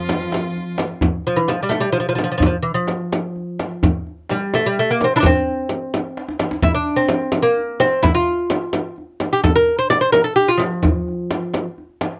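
Stately and festive, this excerpt of a Persian modal ensemble piece moves in a straight 6/8 at 86 beats per minute, set in the dastgah of mahur on F. A bright, delicate fingerpicked lute with gut double strings, some doubled at the octave, carries the melody up front from the opening through 11.7 seconds, ranging from E3 to D5. At the very start, a rich, distant violin with a slapback echo and a nasal, boxy cello with expressive portamento sound briefly behind it, over a dark, veiled drone from a muted chamber cello section on a low F that ends by 1.1 seconds. A frame drum, compressed and saturated and played with hard hands close to the listener, enters together with a tight tombak that carries a touch of live room, both driving the rhythm from 0.1 seconds to the end, with a drum fill at 6.2 seconds. The sound is dry and close, in the manner of a 1970s studio recording.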